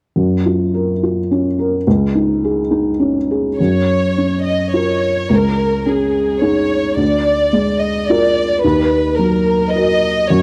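A felt-muted upright piano opens at 0.2 s with soft, boxy, dark accompaniment over F#maj7 and C#sus2 chords, and at 3.6 s a close chamber violin section enters with a tender, lightly vibrato-touched bowed melody carried by tape echo, moving through A#7/D to D#m in this intimate neoclassical excerpt in F# major, played rubato in 3/4 around 107 BPM, tuned to A4 = 439 Hz and captured as a dry, up-front 1970s-style studio recording in a small room.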